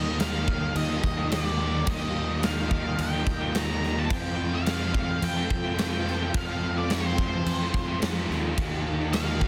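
Shoegaze and dream pop rock with a blissful, hazy mood, heard in a short section cut from a longer piece. An octave-fuzz lead guitar carries the melody with a distorted, picked tone and a slapback echo, floating over a soft string machine whose silky, mellow sustained chords sit in the background, colored by phaser and ensemble chorus. Two overdriven guitars play the riff: a chorused semi-hollow guitar lying back in the mix, and a crunchy, very quiet companion beneath it. Up front, a fuzz-driven fingered bass gives a punchy low end, and a big acoustic rock kit enters at 0.2 seconds with crash, tight kick and a medium-tuned snare in a bright stone room. The harmony moves from Ebadd9 to Fadd9 at 4.1 seconds and back to Ebadd9 at 8.6 seconds, all wrapped in light studio reverb and a dense, heavily limited modern master.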